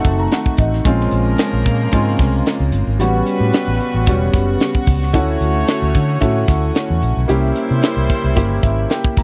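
A tight funk drum kit with a high-tuned snare and a tight kick sits up front, driving this slick, bittersweet piece of polished 1980s jazz-funk pop at 112 BPM in 4/4, with a light sixteenth-note swing. A dark, round, foam-muted fingered electric bass plays just as prominently beneath it. The grand piano is present and polished, with a subtle chorus; it accompanies throughout and plays fills at the opening and again from 8.4 s. A jazz-style horn section adds a tight second line with vibrato. Behind it all, a bowed studio string section holds soft-attack sul tasto chords with a pure, floating tone. The harmony moves through rich extended chords from F7b9 to C7b9, and the close, dry 1970s-style studio sound keeps this short excerpt intimate.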